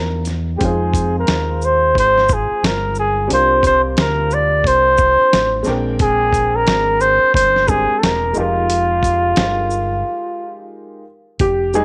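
Mellow and nocturnal, this swung jazz-hop excerpt from a longer hip hop piece sets a breathy, up-front flugelhorn solo with light vibrato and scooped notes over woody, slightly detuned upright piano chords, a dark, round fingered electric bass and a gritty, compressed sampler-style drum kit of thumpy kick, medium-tuned snare, hi-hat and shaker, inside a light reverb and digital ambience, with a break arriving at 10.0 seconds and the horn dropping out at 10.7 seconds.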